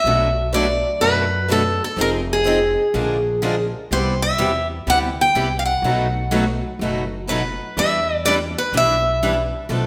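A boxy, up-front parlour steel-string guitar carries the melody from the very start, its picked lines bright with audible finger squeak and ringing out until 9.7 seconds. This short fragment of a longer piece is acoustic string swing in the jazz manouche tradition, in 4/4 with a swung eighth-note feel and a bittersweet yet swinging mood. Beneath the lead, a second steel-string guitar with fresh strings and a concert tone plays picked accompaniment, joined by a swing-style acoustic guitar that sits lower in the mix. A woody, growly pizzicato upright bass anchors the low end throughout. The harmony moves from Bm7 through Fm7, A#7 and Cmaj7 to B7 before settling on Em7 at 7.8 seconds, and a wet recital-hall reverb gives the ensemble a spacious, resonant setting.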